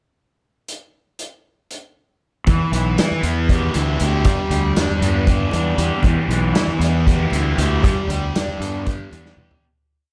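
Psychedelic rock in 7/8 at 235 BPM counted in eighths, this short, complete piece sits in E minor with a dark, mysterious mood, tuned slightly below standard pitch. A vintage acoustic drum kit opens alone with a pickup bar, its punchy kick, medium-tuned snare and rolled-off top sounding up front in a small, pumping room. At 2.5 seconds the groove begins as a bright, double-tracked fuzz guitar plays picked arpeggios with distortion and phaser, joined by an overdriven fingered bass driving a syncopated riff and very quiet congas struck with hard hands on thick skins. From 4.4 seconds a resonant drone on E adds sawtooth and sine tones with moving overtones, chorus and phaser far beneath the band. The harmony alternates between E minor and G, and the piece fades out from 7.8 seconds, closing on a brief drum fill.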